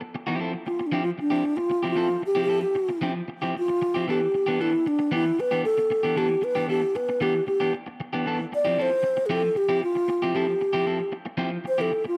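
A straight 4/4 disco groove drives this sultry, dry and close 1970s-style excerpt, where a compressed, slightly broken-up electric guitar with spring reverb sits under a breathy, hollow alto flute that enters at 0.7 s and carries the melody with vibrato and a crisp attack over Fmaj7sus2 and Em7 chords.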